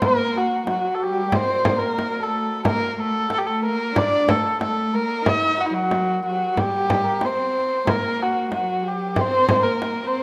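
A dark, up-front kamancheh carries the melody with vibrato, soft attacks and gliding portamento in this soulful, hypnotic Persian modal ensemble excerpt at 92 BPM in a straight 4/4, while a rich, smooth cello section sings a second line, a bright, shimmering santur rings in the background, and a close, dry frame drum provides percussion, all set in a moderate recital-hall reverb.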